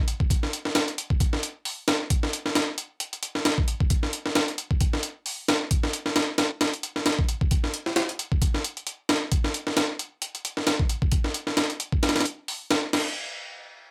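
A gritty, pitched-up, sampler-style breakbeat drum kit of thumpy kick, high-tuned snare, hi-hat and crash cymbal plays alone up front from the start of this raw, energetic excerpt. It is compressed and tape-warm, with a swung sixteenth feel in moderate studio reverb, and it drives a drop through to 9.3 seconds before shifting into a new section that runs until the kit stops at 13.0 seconds.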